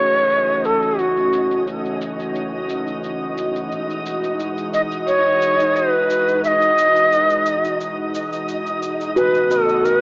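Mystical and warm, this excerpt of organic downtempo drifts along in a straight 4/4 over F#m7, Emaj9 and A69 chords. Up front, a Native American-style cedar flute carries the melody with a reedy, mellow tone, tongued notes, vibrato, rolled-off highs and an analog delay. Beneath it sits an airy, soft pad with chorus and the grit of a vintage 12-bit sampler, while a round, deep analog bass stays dark and far in the background. From 0.3 seconds a granular texture adds twinkling, sparkling octave-up shimmer through its own reverb, and an electronic, overdriven cabasa, filtered and re-recorded in a large room, adds a faint presence. At 9.2 seconds a steel tongue drum played with rubber mallets briefly rings out pure, meditative arpeggios, all framed by a gritty hardware sound with a cassette and AM radio character and light reverb.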